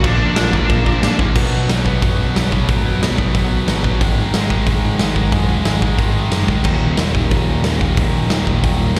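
An up-front, big-room acoustic drum kit with a punchy kick and medium-tuned snare drives this raw, aggressive punk rock at 182 BPM, alongside a growly overdriven bass, a bright overdriven guitar riff with slapback echo, a very quiet double-tracked fuzz guitar, a very quiet sludgy distorted guitar, and a dark, bluesy lead guitar with distortion and tape echo that plays only during the first 1.2 seconds, all captured live through a venue's PA in a recital hall as the chords move from Bb to B5, Ab5 and Eb5.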